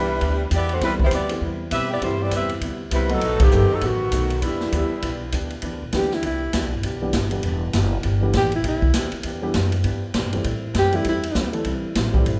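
Heard in a moderate recital-hall reverb, this excerpt of sultry, brassy big band swing in E minor moves at 199 BPM. A punchy, up-front drum kit and a woody, growly pizzicato upright bass drive it throughout, under a dark, mellow baby grand and a clean, compressed hollow-body electric guitar in the background. A close-miked saxophone section with vibrato carries the opening melody until 5.3 s, with a band accent at 3.4 s, before an alto saxophone takes a clear solo from 6.0 s, its soft attack, light vibrato and scooped notes staying up front over chords moving from Em7 through Cmaj7 and B7 to Am7.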